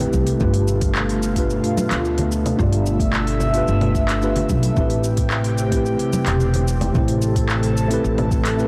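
Sunset chillout with a smooth, relaxed mood, cut from a longer piece, where a worn, slightly out-of-tune tine electric piano plays mellow accompaniment through a low-pass filter sweep and digital delay over an airy, breathy pad with chorus and phaser, a woody, growly pizzicato upright bass, congas sitting in the background until 6.7 s, a soft, tape-warm electronic kick and a produced R&B kit with smooth hats, cabasa, congas and handclaps, all in a light reverb and an overdriven, blown-out recording moving from G9 to Am9.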